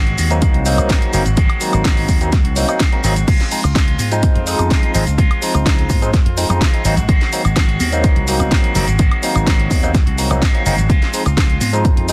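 A filtered guitar riff and a growly slap bass open this feel-good, sunny slice of filtered disco house, both run through envelope filters and pumping against the sidechain from the very start, the guitar clean and twangy, the bass bright and punchy. A house drum kit arrives almost at once with a cracking snare, bright hats, shaker, woodblock and crash, overdriven and set in studio ambience, while a punchy electronic kick sits up front in the mix from 0.4 seconds. A barky tine electric piano carries the accompaniment through a combo amp, lightly overdriven with medium tremolo, phaser and the grit of an old 12-bit sampler, pumping along with the groove. The chords swing between Ab7 and Dbmaj7, and from 3.3 seconds a very quiet egg shaker and congas add a small-room acoustic touch beneath the dense, heavily limited, dry modern master. It is cut from a longer piece.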